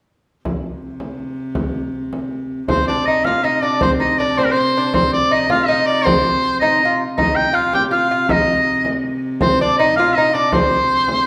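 A mysterious, driving medieval dance in C minor at 107 BPM in a straight 6/8, cut from a longer piece, opening with a rich, floating viola da gamba drone on C3 and a deep, soft-handed frame drum from 0.5 seconds. At 2.7 seconds a bright, vibrato-laden shawm takes the lead up front in a folk style, ranging from Bb4 to G5, while a delicate fingerpicked lute with double strings carries a second line between C4 and G4. A wet recital-hall reverb washes over the whole.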